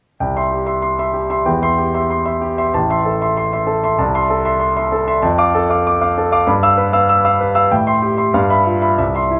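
In a duple metre with a flexible, rubato feel, this brief cut from a longer classical work pushes and pulls at the pulse like a virtuoso piano study. A solo grand piano plays from 0.2 to 9.4 seconds, ranging from A1 up to E6 and sitting polished and up front. The mood is sparkling and brilliant, with the harmony moving from C through C/E and Am to Am/C, then Dm/F, G6 and Am7 before settling back on G6. Light reverb gives the instrument a touch of space, while lossy compression artefacts tint the sound. The piano is tuned slightly high, to A4 = 441 Hz.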